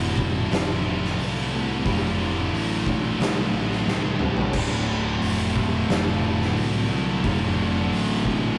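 A scooped, high-gain guitar, a thick fuzz guitar and a growly fingered electric bass open this short cut from a longer stoner and doom metal piece, grinding through a riff on D minor at 89 BPM in a straight 4/4. The mood is heavy and ominous. The scooped guitar is bright and double-tracked, spanning D2 to F4, while the fuzz guitar stays dark in the low register and the bass sits beneath them with overdrive and tube saturation. An oversized, low-tuned acoustic drum kit enters at 0.2 seconds, up front and gritty, with a fat snare, punchy kick, hi-hat, crash cymbal and toms, and a drum fill arrives at 3.9 seconds. At 4.5 seconds a second, very quiet fuzz guitar joins with a warm, distorted tone. A moderate stone room reverb and a rough rehearsal-room sound give the recording a raw, live weight.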